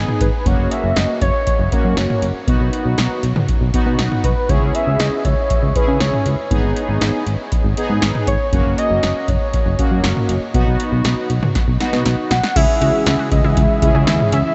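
A dreamy, reverb-soaked mix with its top end rolled off frames this driving, nocturnal synth-pop excerpt at 119 BPM in C# dorian, where a velvety chorused lead with tape echo and portamento sings over fat, warbling analog synth brass, a punchy round FM bass and an up-front analog drum machine with a deep kick and metallic hats, until a drum fill at 11.6 seconds ushers in a brassy, airy background pad and a lush, wave-folded unison pluck at 12.6 seconds as the chords move through F#, B, C#m and G#m.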